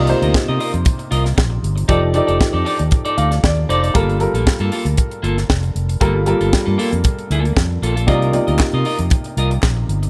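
This sultry, driving disco cut in G minor opens with clean, picked electric guitar, a natural-sounding baby grand piano and a growly fingered electric bass playing together, joined a split second later by a tight funk drum kit at a straight 116 BPM in 4/4. Up front, the dry, polished kit pairs a high-tuned snare and tight kick with hi-hat, while the amped bass sits just as forward in the mix. Guitar and piano share the accompaniment over a harmony that moves from Cm11 to F13, settles on Gm9 and returns to Cm11. The piano steps out with a fill at 2.9 seconds, and crisp group handclaps appear in the background at 8.6 seconds. A light studio reverb surrounds the whole, and the passage is cut from a longer piece.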